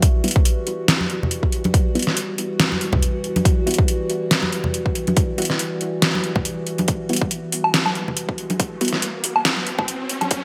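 A swung, half-time groove drives this brooding, cavernous deep dubstep build-up, where a punchy, overdriven electronic kick and an up-front kit of deep snare, metallic hi-hats and woodblock, overdriven with gated reverb, sit over a resonant sawtooth-and-sine drone with moving overtones, chorus, phaser and gritty 12-bit sampler grain, while muted, detuned chord stabs with a filter pluck drift in the background through phaser and dub echo under a filter sweep that runs the whole way, close, dry congas played with hard hands join at 1.0 s with dub echo, and a background electronic riser enters at 8.4 s, all set in a bright 1980s-style digital mix with lush hall reverb.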